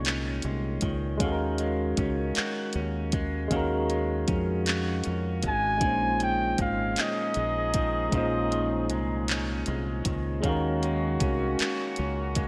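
A bright 1980s-style digital production, bathed in a lush hall reverb, frames this yearning, late-night slow R&B fragment in 6/8 at 52 BPM, moving between Bbm11 and Ebm11. A tape-warm electronic drum kit with soft kick, handclaps and hi-hat under gated reverb, a round, punchy dub bass and a clean tine electric piano with lush chorus hold the groove, while a twangy, slightly broken-up electric guitar with subtle chorus carries a second line. After a brief touch at the very start, a smooth-topped flugelhorn sings its solo melody from 5.5 to 9.0 seconds, and a distant, roomy horn section with light vibrato adds delayed stabs from 7.0 seconds on.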